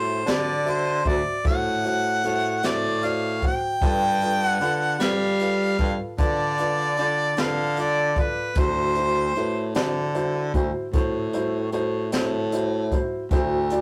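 An overdriven harmonica carries the melody up front with light vibrato and scooped notes, dropping out at 9.8 s, in this gritty, swaggering slow blues fragment at 51 BPM in 12/8, set in D mixolydian over D7, G7 and back to D7. A breathy baritone saxophone plays the bass line with subtone and vibrato, while a woody upright piano fills in the accompaniment and a brushed drum kit, with a boomy kick and high-tuned snare, enters at 0.3 s. The rough rehearsal-room sound sits in moderate studio reverb.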